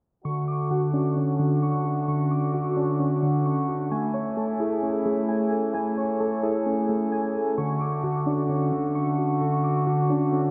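Warbling, detuned lo-fi synth keys sit up front, spinning nostalgic arpeggios that span a broad register with a fast attack and a decaying tail, thickened by chorus and tape echo. This dreamy, triumphant hip hop fragment, cut from a longer piece, moves at 131 BPM in 4/4 with a relaxed half-time feel. Alongside the arpeggios, a mellow, clean tine electric piano plays direct, close accompaniment colored by analog chorus. A muted French horn section holds nasal, metallic sustained chords with a soft attack from a distant, roomy position, lending a classical ensemble glow. The harmony rests on Dmaj7, shifts to Amaj7 at 3.9 seconds and returns to Dmaj7 at 7.6 seconds. The whole mix is soaked in a lush hall reverb and softened by a low-pass filter, giving it a hazy, dreamlike sheen.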